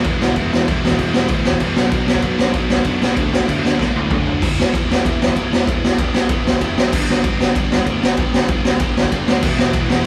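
A raw garage drum kit sits up front with a boomy kick, gritty saturated crashes, ride, snare and toms, driving this urgent, angry punk rock excerpt in E minor at 192 BPM, with a fill from 3.8 to 4.4 seconds. A sludgy, double-tracked overdriven guitar riffs throughout, while a thick fuzz guitar sits in the background, dropping out at 4.4 seconds and returning at 9.4 seconds. A very quiet, growly fuzz bass underpins the band, which plays live in one room with light reverb.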